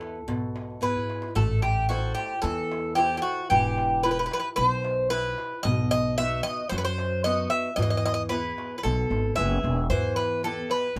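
Heard in a small room with moderate reverb, this moody, brooding Greek folk excerpt sets a bright, metallic bouzouki with double strings up front over a boxy, woody old ladder-braced acoustic guitar, a growly pizzicato upright bass on steel strings, and a crisp, deep metal-shell darbuka in the background that plays a fill from 0.8 to 1.4 seconds.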